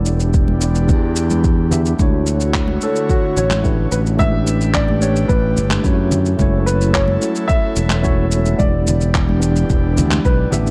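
A dark, mellow concert grand piano carries the melody from 2.8 s, its tone roughened by vintage 12-bit sampler grit and trailed by digital delay. This short cut from a longer sunset chillout piece moves at a smooth, relaxed 109 BPM in 4/4 with a straight feel, sitting in E dorian over the progression Em7, Dmaj9, A9sus4, F#m7 and back to Em7. Beneath it, a clean tine electric piano plays accompaniment through its built-in speakers with tape echo. An airy, breathy pad holds soft, detuned sustained chords with a slow attack, long release and chorus. A bright, direct fingered electric bass sits up front, while a deep, layered electronic kick, gritty compressed cabasa and handclaps, and very quiet close, dry congas fill out the groove. Light reverb and a dark, warm production tie the parts together.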